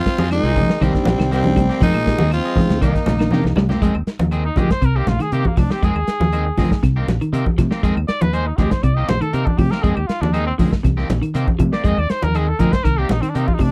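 A vintage, punchy trumpet takes the solo from 4.5 seconds in this driving, funky afrobeat excerpt, after a brief opening where a growling, raspy tenor saxophone leads a bright trombone and a very quiet baritone saxophone, backed by a mellow, flute-like tonewheel organ on slow rotary speaker until 3.4 seconds. Underneath, a round fingered bass and a dark soul drum kit with a punchy kick anchor the groove, with low-tuned, ringing congas and woody claves in the background. A twangy, slightly broken-up electric guitar plays stabs while a clean guitar adds phased arpeggios, all captured in a dry, close 1970s-style studio sound that moves between Fm7 and Cm7.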